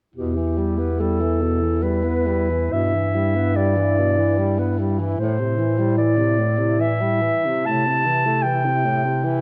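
This classical piece for single-reed quartet has a yearning, elegiac mood. It moves at 72 BPM in 3/4 with uneven, rubato beats, and its harmony settles in E minor before leaning toward A minor. A mellow clarinet carries the lyrical melody up front, ranging from G4 to A5. Beneath it, a bass clarinet, also up front, anchors the bass between E2 and C3 with a smooth top. The tenor saxophone supplies warm, vintage-tinged accompaniment with vibrato from A2 to B3, while the alto saxophone holds a quiet second line on E4 in the background, beginning at 0.1 seconds just ahead of the others. A moderate recital hall reverb and a dark production wrap this short passage, which is cut from a longer piece and runs to 9.4 seconds.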